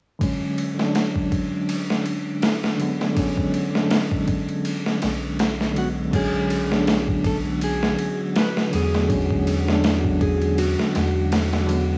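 Hypnotic and brooding, this trip hop fragment sits at 81 BPM in B dorian with a lightly swung sixteenth-note feel, cut from a longer piece and resting on a single Bm69 chord. A bell-like tine electric piano opens the accompaniment at 0.2 seconds, bright and up front, coloured by tremolo, tape echo and a low-pass filter that sweeps through its part. Alongside it comes a dusty, sampler-style drum kit, compressed and gritty with a thumpy kick, a medium-tuned snare, ride and crash, pushed forward with overdrive. A soft, round dub sub bass enters at 5.0 seconds, and a dark, clean lap steel guitar carries a slide melody between F#4 and B4, trailed by tape echo. From 7.3 seconds an airy, breathy wind-like noise texture hovers in the background on a held F#4, while the whole recording carries the feel of a home cassette recording, with vinyl crackle and small-room ambience.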